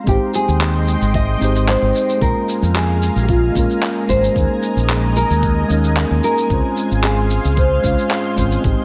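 A mellow tine electric piano with delay and a lush, detuned unison pad treated with chorus and phaser open this smooth, blissful sunset chillout excerpt, soon joined by a thumb-plucked nylon-string guitar melody with delay, a dark, round fretless bass sitting up front, and a thumpy, gritty, tape-warm sampler-style kick with shaker and handclaps, all drifting in a gentle sixteenth-note swing over Abmaj7, Bbm7, Eb7sus4 and Dbmaj7 in light digital ambience.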